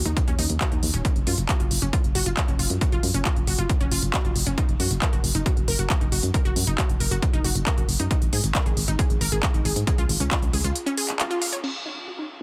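Emotional and euphoric, this short uplifting trance excerpt moves at 136 BPM in a straight 4/4. A round, dark FM bass with a fast, decaying attack holds the low end from the start until 10.7 seconds, pumping against the sidechain, while a lush, detuned unison pluck built from sawtooth, sine and a noise layer spins arpeggios through a filter sweep, trailed by dub echo. The techno drum kit sits up front with smooth, low-pass filtered hats, handclaps and crash cymbal, all carrying a tape-like character from being re-recorded in a small room, and a punchy, layered electronic kick drives underneath until 10.4 seconds. The harmony drifts from an open start through Gb5, D♭ and finally E♭ minor, with a band accent landing at 11.2 seconds. Digital ambience surrounds a dense, heavily limited modern master.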